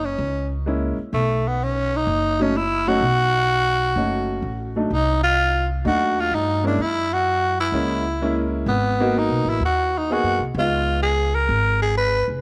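Light reverb and a small-room ambience frame this short cut from a longer small-group jazz performance: a relaxed swing-and-bop tune at 127 BPM in 4/4 with swung eighth notes, moving through F#7, B7 and Cdim7 changes. Up front, a growling tenor saxophone carries the melody in a raspy, breathy, gritty tone, while a woody pizzicato upright bass with steel strings holds down the low end from the start. An upright piano with a smooth, vintage sound and short sustain enters at 0.7 s to accompany them, adding to the warm, easygoing mood.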